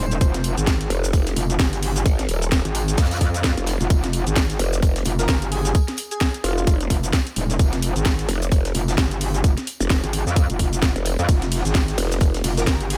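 A swung 130 BPM bass house groove in F minor is driven by a tight, overdriven electronic kick up front and an overdriven garage kit with a cracking snare, hi-hat, ride, and shaker, while a very quiet gated 80s kit adds hi-hat, snare, and tambourine in a bright stone room. The aggressive, swaggering low end pairs a metallic, distorted FM wobble bass running the full 13 seconds with a saturated, formant-filtered growl bass from 0.9 seconds, both with sidechain pumping. In the background an airy, detuned lead with vibrato and tape echo surfaces briefly around 5.2 seconds, and a faint electronic swell passes near 3.1 seconds in this dry, short cut from a longer piece.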